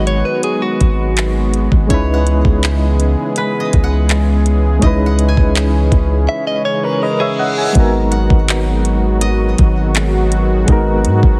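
A straight 4/4 groove at 82 BPM sets a moody, sensual contemporary R&B feel in G# minor, driven by an up-front electronic drum kit with a knocking kick, metallic hi-hats and handclaps over a deep, sine-toned 808-style bass that sustains long notes. Round, chorused electric-piano-like synth keys with tremolo and a detuned sawtooth analog pad carry the G#m7 and C#m7 chords, while a clean, direct-recorded electric guitar plays brief arpeggios with vibrato and digital delay, and a quiet, woody koto adds delayed texture from 1.9 seconds. At 6.3 seconds a break brings the guitar back, and a faint reverse cymbal enters at 6.9 seconds, leading into the next section, all heard in a dry, heavily compressed radio sound in this fragment of a longer piece.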